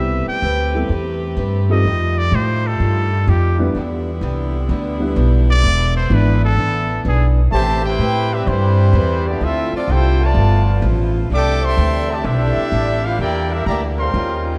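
Swinging at 127 BPM in A minor, this dramatic, brassy big band excerpt opens with a nasal straight-muted trumpet solo over a woody pizzicato upright bass, boxy picked archtop guitar, upright piano and an edgy saxophone section holding sustained chords, then at 7.5 seconds a bright trumpet section takes the melody up front while a veiled cup-muted trombone section adds a distant second line, all set in a moderate scoring stage reverb with a dark, warm production.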